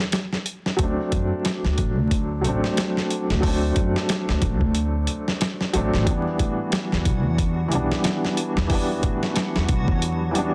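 A swung 91 BPM groove in 4/4 opens this melancholic, cinematic trip hop fragment, cut from a longer piece, with a dusty soul sampler-style drum kit entering at 0.1 seconds: a thumpy kick, a medium-tuned snare and hi-hat sit up front with a gritty, compressed, tape-warm character. At 0.8 seconds a felt-muted upright piano and a pizzicato upright bass arrive together on a D7 chord, the piano soft and intimate with audible action noise, colored by tremolo, tape echo and the grit of a vintage 12-bit sampler. The bass holds the low end with a woody, growly tone from its steel strings. The harmony moves to Em7 at 6.1 seconds, and shortly after, at 6.5 seconds, a reversed, swelling texture drifts in far in the background, detuned and granular with a dreamy, bright shimmer and its own reverb. Light small-room ambience and vinyl crackle frame a dense, heavily limited modern master.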